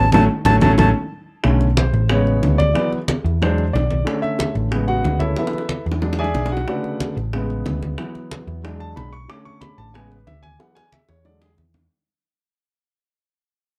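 Straight 4/4 congas struck with hard hands and tight, high-tuned bongos drive this danceable, sophisticated Afro-Cuban jazz excerpt at 184 BPM in A major, where a breathy, reedy flute with plate reverb sounds a brief A5 before stopping at 0.9 s, a round, amped hollow-body electric bass holds the low end, and an intimate grand piano with audible action noise and long sustain takes a solo from 1.4 s through a fade-out over Bm7, Amaj7 and E7 changes, all set in a moderate club reverb with a dark production.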